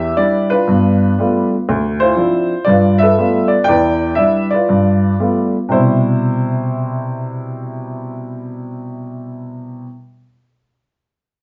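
Solo jazz in C major at 119 BPM, this swinging, playful 4/4 excerpt features a woody, naturally sustaining upright piano sitting up front and ranging from D2 to G5, moving through Em7, G9 and Dm9 before settling on Cmaj7 at 5.7 seconds, all set in a wet club reverb heard from further back in the room with a dulled top end, cut from a longer piece.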